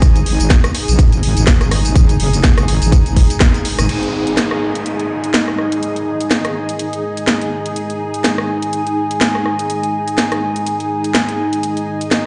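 Heard through a big sound system in a bare room with large studio reverb and a muted top end, this aggressive, bouncy bass house excerpt at 124 BPM opens with a heavy, saturated, detuned sawtooth wobble bass pumping up front until 3.9 s, joined by a tight electronic kick that drops out at 3.5 s. Meanwhile a garage kit of cracking snare, hi-hat, rim click, tambourine and crash keeps a swung groove throughout, and a blurred, evolving granular cloud pad drifts beneath. At 3.9 s a deep, nasal, moody analog pad enters with sustained chords as an electronic downlifter falls through the mix.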